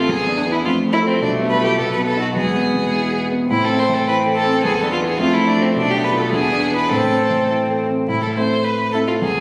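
In a 2/4 at 106 BPM, taken with a flexible rubato, this short cut from a brisk classical-period movement for piano quartet moves in A minor with a cheerful, graceful air. Up front, a single violin carries the melody with a smooth, even tone and light vibrato, while a second violin enters at 0.4 s with a darker, woody second line. Set further back, a focused, close-sounding cello adds its own bowed second line with vibrato. The grand piano supplies a warm, intimate accompaniment with long sustain, and its action noise can be heard. Near 8.1 s the opening section returns, all heard through a phone capturing the room, bathed in a wet recital hall reverb.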